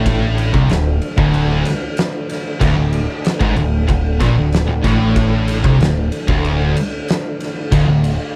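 A brooding, heavy stoner and doom metal passage cut from a longer piece opens at once on a wall of riffing guitars: two thick, fuzzed-out guitars, one warm and one dark, alongside a bright, scooped, double-tracked high-gain guitar, all sitting back in the mix beneath a growling, overdriven picked bass that carries the low end. An oversized, low-tuned acoustic drum kit arrives at 0.1 s, up front and gritty, with a punchy kick, fat snare, dark crash and ride cymbals, and a big, pumping room sound. Behind it all a clean tonewheel organ holds sustained chords through a slow rotary speaker with chorus vibrato and audible key click, in a dry mix with little reverb.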